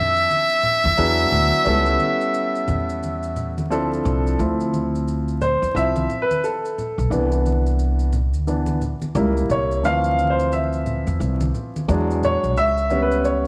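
Vinyl crackle and a moderate echo-chamber reverb frame this mellow, cool jazz-hop cut, where a buzzy, breathy trumpet in a metal mute carries the melody with light vibrato and scooped notes until 3.7 s, a woody, vintage upright piano with long sustain accompanies and then takes a solo from 4.4 s, a dark, thumpy pizzicato upright bass on gut strings anchors the low end, and hard-handed maracas and congas sit low in the mix with a small-room sound.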